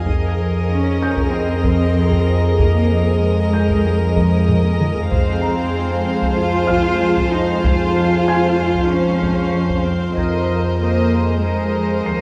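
Mysterious and eerie, this suspense film-score excerpt carries a floating, sul tasto violin melody over a rich second violin line with light vibrato, woody background violas, an intimate, dark cello section entering at 0.7 seconds, and pure, smooth-topped double basses. A calm, nasal organ-like drone and glassy sustained chords with drifting overtones and chorus hang in the air, while a mellow felt-muted upright piano and a dry, rustic marimba riff sit in the background and a hard-stick taiko ensemble adds weight, with a drum fill at 4.5 seconds. A faint extra violin texture joins at 5.1 seconds, all within a dark, warm production and moderate scoring-stage reverb.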